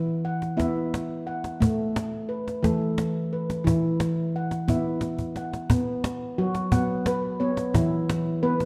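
World meditative music for tuned percussion, this gentle excerpt moves at 59 BPM in 6/8, with an up-front handpan spinning ringing, airy arpeggios from E3 to F#5 over power chords on E, A and B. A snappy cajon with snares, struck with hard hands and kept close and dry, joins at 0.1 s and plays a drum fill from 5.2 to 5.7 s, where a second section begins. A dark production with a wet echo chamber reverb surrounds the piece, which is cut from a longer work.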